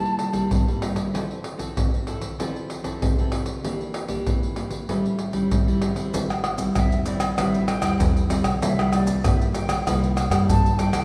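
Samba and choro with a nostalgic, lively mood, this short cut from a longer piece rests on a dark, full-bodied nylon-string guitar, fingerpicked with audible finger squeak, beneath up-front percussion of pandeiro, maracas, tamborim and a deep surdo struck with hard hands, their sound vintage and band-limited. An airy, distant concert flute with vibrato and tongued notes offers a brief phrase at the start, then returns expressively at 6.8 seconds, just after a woody pizzicato upright bass enters in the background at 6.1 seconds. The ensemble is heard in the reverberant acoustic of a recital hall.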